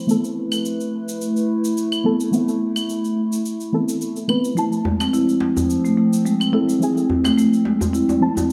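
A round, mid-forward marimba played with soft mallets steps into this short cut of organic downtempo at 4.6 seconds, tracing gentle arpeggios through a tape echo as the harmony moves from Amadd9 to Fmaj7. Beneath it, a deep, nasal chord stab with a fast, decaying filter pluck carries the accompaniment from the start, darkened by chorus and tape echo while a filter sweep runs across it the whole way through. A warbling, detuned, lo-fi pad holds sustained chords alongside it, its slow attack, long release, chorus and built-in reverb giving it a nostalgic haze. Electronic-sounding cabasa and claves, re-recorded in a large room, tick along quietly with a light 16th-note swing, and a tight, cracking djembe with a compressed, saturated edge joins at 4.9 seconds. A moderate echo-chamber reverb frames the whole ensemble, keeping the mood hypnotic and meditative.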